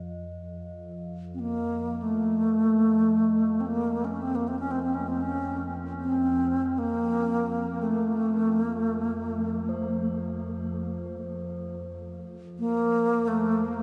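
Haunting and meditative, this fragment of a longer world-meditation piece drifts in unmeasured time, bathed in a huge, dreamy reverb. A glassy FM pad holds a low drone throughout, its slow attack and long release softened by ensemble chorus and its own built-in reverb into an ethereal, mellow bed. A quartz singing bowl, struck with a wooden striker, rings briefly at the opening and returns from 9.7 seconds, its pure tone sitting in the background with a slow beating shimmer. From 1.3 seconds a bright bass flute carries the melody up front, airy and expressive, with tongued notes and vibrato trailing into a diffuse ambient delay.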